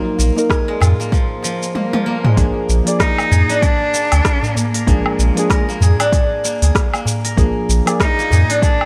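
A lightly reverberant, earthy mix carries this short organic downtempo excerpt at 96 BPM, with a gentle 16th-note swing over Ebm/Bb moving to Bb7. A deep, mellow chord stab with chorus, tape echo and sidechain pumping opens under a filter sweep alongside a brilliant, silvery fingerpicked steel-string zither, while a round, up-front sine sub bass, an overdriven electronic kick, a smooth-hatted electronic kit with rim clicks, shaker, toms and woodblock, and a dry, hard-handed darbuka settle into the groove. A faint electronic swell and a drum fill lead into the next section, where a clear, focused bowed cello with vibrato and digital delay takes the melody from 3.0 s.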